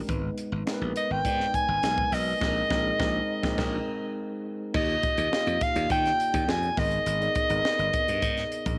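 Upbeat and urban, this polished 1980s jazz-funk pop excerpt opens on a mellow tine electric piano with subtle chorus, joined almost at once by a glassy, growly slap bass and a crisp acoustic fusion kit with a punchy kick, high-tuned snare and dark cymbals, before a clear soprano saxophone with vibrato and scooped notes takes the up-front lead at 1.0 s, the band hitting an accent from 2.4 to 4.7 s as the chords move from Abm through Bb9sus4 to Ebmaj9 and Abmadd9, set in light reverb on a home cassette recording.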